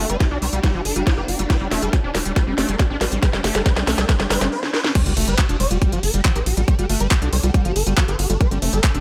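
A screaming, squelchy acid riff, distorted and chorused with dub echo and sidechain pumping, drives this alien, psychedelic trance excerpt at 139 BPM in G minor, over a punchy, saturated sawtooth sequencer bass and a tight, up-front electronic kick. A swarming, detuned rave lead carries the melody through chorus, phaser and delay, while a faint granular drone holds tense sustained chords, and a formant-sweep wobble bass appears only for the first 1.6 seconds. Tape-toned garage drums with cracking snare, crisp hats, handclaps, ride and crash fill the build-up, which gives way at 5.0 seconds to the drop, marked by a very quiet sub drop, with light reverb over the mix.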